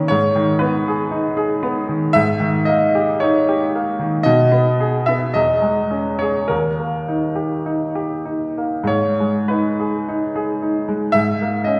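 The rhythm moves in a slow, rubato 4/4, with the pulse drifting between 47 and 59 BPM as the phrases breathe freely. This is a short passage from a romantic classical nocturne in G# minor, played by a solo baby grand piano tuned to A4 = 445 Hz, and the mood is yearning and mournful. The piano sounds bright and brilliant, with a worn, natural character and a short sustain, and it sits up front even though the recording places the listener further back in the room. A wet scoring-stage reverb, with a decay of about 1.5 seconds, surrounds the instrument. The harmony moves from G#m through D#7/G#, G#m/B and C#m/E to a D# chord at 6.5 seconds, then returns to G#m before settling on a C#m69/G# at 11.1 seconds. The playing spans from a low D#2 up to E5 across the 11.8 seconds, and the passage is cut from a longer piece.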